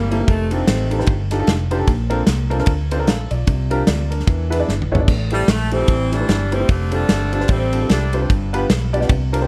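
Swung eighths in 4/4 drive this uplifting, hopeful uptempo gospel excerpt, where a punchy acoustic drum kit with dark cymbals in a small room and a round, foam-muted vintage electric bass sit up front beneath an intimate, woody upright piano with audible action noise, while a tight, bright, close-miked saxophone section states the jazz-style melody briefly at the start and returns at 5.3 seconds after a drum fill at 4.7 seconds, all in a dark, warm production with light reverb over a progression moving from F13 through Bbmaj9, E7 and Am7 to G7.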